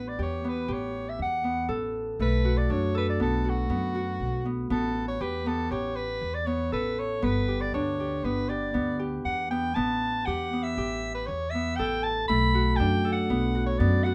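A soprano saxophone, a Celtic harp and an upright bass begin together at 0.0 s in this hopeful, shimmering piece of contemporary chamber music, cut from a longer work. It moves at 119 BPM in a straight 5/4, centred on A mixolydian, with the chords cycling through Asus2, Bm7 and G6. The saxophone carries the solo melody between F#4 and B5 with a punchy, forceful pop-style tone, light vibrato and a roomy, slightly distant character. The fingerpicked harp spreads bright, ringing arpeggios from A3 to A4. Beneath them, the pizzicato upright bass on steel strings has a woody, growly sound low in its range. Moderate studio reverb gives the whole trio a shared space until the passage ends at 14.1 s.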